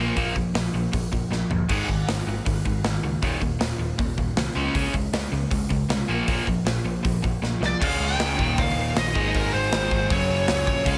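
A bright, high-gain lead guitar cuts in up front at 7.7 s with a distorted melody, capping a rowdy, energetic stretch of punk rock in straight 4/4, cut from a longer piece. Beneath it, two overdriven guitars, one crunchy and one semi-hollow with a hollow-body tone, play riffs in the background, while a growly, amped electric bass holds the low end. A big acoustic rock kit sits forward in a roomy space with bright cymbals, a medium-tuned snare and a punchy kick, adding fills at 1.3 and 7.4 seconds, and the whole mix carries a light reverb.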